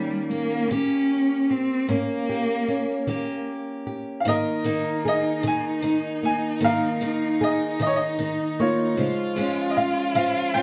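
Heard from further back in a wet studio room, this hopeful, tender acoustic folk-pop ballad in a straight 6/8 opens with an expressive bowed cello solo, rich with vibrato and portamento, over dark fingerpicked nylon-string guitar and bright picked steel-string arpeggios, until a brilliant, woody upright piano takes the melody at 4.2 seconds and the cello settles into a second line.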